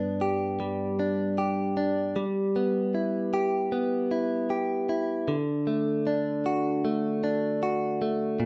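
In a straight 4/4 pulse at 77 BPM, this heartfelt, tender pop excerpt in D major features a lone bright, clean electric guitar, picked, compressed and up front, ranging from G2 to G4 over G and Em/G before settling on D at 5.3 seconds, bathed in a wet studio reverb within a rough home demo mix.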